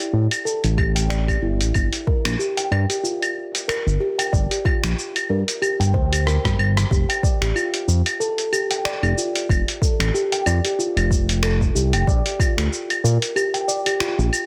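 Earthy and mystical, this short organic downtempo cut, taken from a longer piece, sways on a loose sixteenth-note swing as a round, ringing steel tongue drum, struck with firm rubber mallets, spins airy arpeggios through tape echo. A gritty, tape-warm sampler-style kit of cabasa, claves, finger snaps, hi-hat and rim click sits up front with soft clipping on the snare, while a smooth, mellow synth bass with vibrato and sidechain pumping joins an overdriven electronic kick that enters at 0.8 seconds. A drum fill at 6.3 seconds leads into a second section moving from Fadd9 to Bb, all under light reverb and a dense, heavily limited master.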